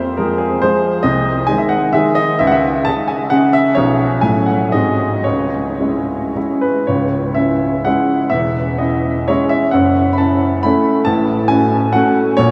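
A clear baby grand piano opens this brief fragment alone, playing a romantic classical dance in triple time with dotted rhythms and a capricious, nostalgic mood. The tempo bends freely under rubato, giving the dance a wistful, pliant feel. Heard up front and intimate, the piano carries audible action noise and a long, natural sustain, reaching from the deep bass to the upper register. A huge, wet reverb places it in a vast, echoing space, with a hint of small-room ambience close around the instrument. Around 6.9 s the music moves into a second phrase, drifting through minor-key harmonies before the fragment is cut off at 12.5 s.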